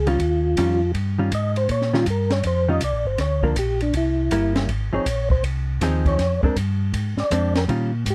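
A dry, close 1970s-style studio sound with light reverb frames this bluesy, swinging soul jazz organ trio, cut from a longer piece, in which a soft, flute-like tonewheel organ with percussive attack, chorus vibrato and slow rotary speaker carries the solo melody over a round, mellow organ bass with key click, a clean, compressed hollow-body electric guitar accompanying up front, and an acoustic drum kit with dark cymbals, a high-tuned snare and a boomy kick.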